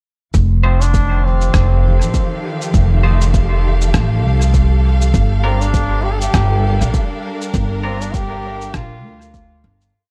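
A woody, up-front pizzicato upright bass carries this spacious, peaceful ambient dub piece, with a dub-style line set against slowly shifting bowed chords from a distant studio string section playing with vibrato and portamento. A brilliant, roomy trombone sings a classical-style motif of call phrases through dub echo, while a bright, clean semi-hollow guitar drops sparse echoing chord stabs in the background. A deep, overdriven electronic kick and a muffled, tape-toned shaker and rim click keep a soft, swung groove in a small room before the whole piece fades out from 6.7 seconds.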